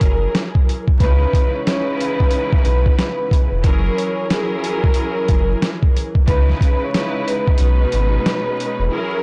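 A gritty, pitched-down boom-bap drum kit with a thumpy kick and a swung feel opens this dark, tough hip-hop excerpt alongside a deep, up-front sub bass, a mellow vibraphone melody with metallic ringing and slow motor vibrato, a clear, distant string section on cassette-tinged accompaniment, and woody background strings holding sustained chords, all in a blown-out, overdriven mix with vinyl crackle and light reverb, until the kick drops out at 7.6 seconds.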